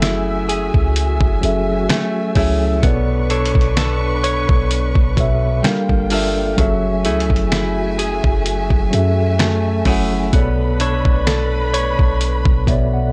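A slow 64 BPM groove in 4/4 with a light swing on the sixteenths anchors this moody, sensual contemporary R&B clip, cut from a longer piece. Up front sits a dusty, compressed sampler-style kit of hi-hat, thumpy kick and fat snare, which stops at 12.9 seconds, while a deep, boomy 808-style bass with a sine body, a noise layer and a fast, decaying attack holds down the low end. A mellow tine electric piano heard through its built-in speakers carries the accompaniment and adds a short fill from 12.2 seconds. A direct-recorded, picked electric guitar plays compressed, clean arpeggios through analog delay, and a lush bowed string ensemble sustains chords with vibrato, portamento and a smooth top. The harmony moves through F#m9, Bm9, Gm9, back to F#m9 and then Bm9, and the whole take has a dry, gritty hardware and cassette-tape character with a touch of digital ambience.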